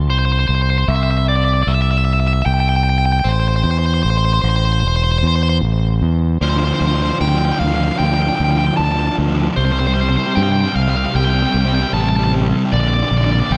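A growling, fingered electric bass opens this melancholic post-rock fragment, overdriven, bright and punchy, sitting up front at a slow 76 BPM in 4/4 with a straight feel in D minor. Almost at once a crunchy overdriven guitar carries the melody high above it, its picked tone treated with phaser and digital delay, as the harmony moves from C to Am. At 6.4 seconds a double-tracked fuzz guitar enters with a compressed, distorted riff in a lower register, and the music begins a cathartic build-up over Dm, C5 and Bb. The production is dark and warm, framed by light reverb and a digital ambience. The recording is cut from a longer piece and ends at 13.6 seconds while the build is still under way.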